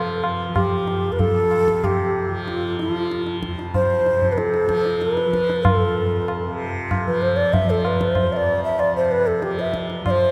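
A mellow bamboo bansuri leads this devotional, radiant Hindustani classical passage, its airy tone carrying the melody between F4 and E5 up front in the mix. Each phrase opens with a crisp chiff, and its vibrato-laden line has a slightly unsteady, human quality. Beneath it, a softly plucked acoustic tanpura sustains a buzzing, shimmering drone from F2 to F3 in raga Yaman on F. A high-tuned tabla joins at 0.2 seconds, its ringing strokes sounding close and dry as they mark an unhurried 95 BPM in a straight five-beat cycle. The ensemble sits in a church or concert hall with a long cathedral reverb, lending the 10.3-second fragment, cut from a longer piece, a spacious, reverent glow.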